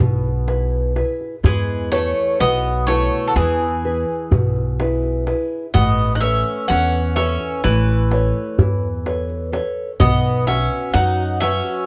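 Two picked bouzoukis with bright, metallic double strings open together, one carrying the melody and the other a lower second line, over a fingerpicked nylon-string guitar with audible finger squeak, a woody pizzicato upright bass sitting up front and a deep clay-shell darbuka, in a peaceful Greek folk excerpt in E major at 126 BPM in 9/8 that moves from E to Aadd9 at 5.7 seconds and on to B at 10.0 seconds, all within a dark, warm production with light reverb.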